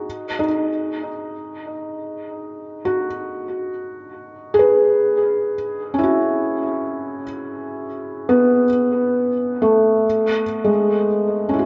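Soaked in wet spring reverb and heavy echo, with a dulled top end, this peaceful ambient fragment, cut from a longer piece, features a lone felt-muted upright piano at 72 BPM in 3/4 and A lydian, its soft, mellow, intimate tone sitting up front with audible action noise and dub echo as it rests on a rootless A69 before settling onto Asus2 at 10.0 seconds.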